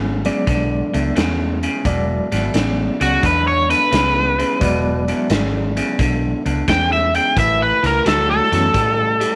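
Gritty and soulful, this short electric blues shuffle at 87 BPM in E mixolydian swings over an E9 chord that moves to A7 at 7.4 seconds, with a slightly broken-up, lo-fi riff from an electric guitar through a small old amp, a reedy electric piano with fast tremolo, a round, foam-muted fingered bass and a raw garage drum kit with a punchy kick and saturated, rolled-off top, joined by a bright, crunchy overdriven lead guitar that enters up front at 3.0 seconds, all set in light small-room reverb.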